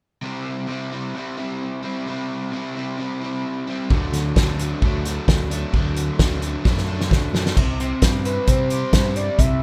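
A straight 4/4 pulse at 131 BPM drives this carefree, jangly indie rock piece in C lydian, where a crunchy, double-tracked overdriven guitar riff plays alone until a round, punchy picked bass and a loose drum kit with a fat snare and dark cymbals enter at 3.9 seconds, a drum fill carries into a new section at 7.6 seconds, and a smooth, full-bodied sawtooth synth lead with chorus, vibrato and slapback echo arrives at 8.3 seconds, all in a dry, rough home-demo mix.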